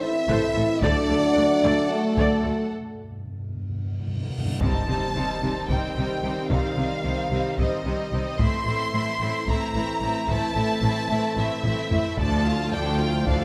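The taiko ensemble drives this heroic, epic orchestral film cue, its hard-stick hits compressed and saturated, with drum fills at 3.8 and 11.4 seconds, while the violin sections carry a smooth, vibrato-rich melody and second line over a background of lush cellos, violas and soft-attack double basses at 222 BPM in 7/8. Mellow, distant French horns and dark trombones hold sustained chords in a roomy scoring-stage reverb, moving through A minor and D before a break at 2.7 seconds where round, up-front timpani on soft mallets play a fill. A huge, bright reverse cymbal enters at 4.1 seconds and leads into an impact at 4.6 seconds to launch a C minor passage that returns to A minor and settles on D minor in this cut from a longer piece.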